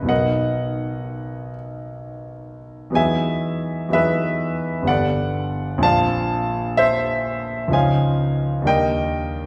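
A lone grand piano opens on a Bmaj7 chord, setting a nocturnal, hazy mood in this short impressionist classical passage cut from a longer piece. The playing moves in a slow 3/4 at 63 BPM with a rubato feel, spanning G1 to A5 over about 9.5 seconds. Lush major-seventh and ninth harmonies drift past, moving through Emaj9 at 3.0 seconds and Gmaj9 and A#maj9 before settling toward Ebmaj7 near 8.7 seconds. The piano tone is clear and natural, sitting up front even as a wet recital hall reverb blooms around it. That hall ambience places the listener further back in the room, giving each chord a soft, lingering halo.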